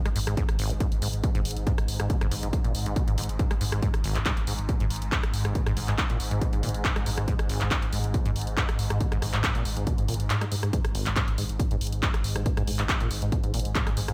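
Intense and dark, this driving peak-time techno fragment pairs a heavy, tape-tinged electronic kick from 0.4 seconds, re-recorded in a small room, with dry analog drum-machine handclaps, rim clicks and pumping hi-hats, while a squelchy, resonant sawtooth acid bass riff, a thick saturated sine sub bass and a swarming, detuned, wave-folded granular drone in the background all pulse under sidechain pumping in a digital ambience.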